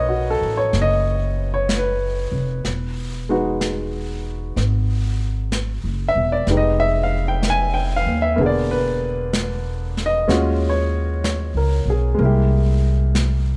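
Intimate and smoky, this jazz ballad excerpt moves at 63 BPM in 4/4 with a swung eighth-note feel, drifting through lush harmony from B7 to Emaj9 and on toward Ebm11 and C7b13. A clear upright piano with a natural, short-sustained tone carries the accompaniment up front, while a pizzicato upright bass on steel strings adds a woody, dark low end, both playing from the start. Brushes on a medium-tuned snare and hi-hat enter at 0.7 seconds, sitting softly in a small acoustic room beneath light reverb.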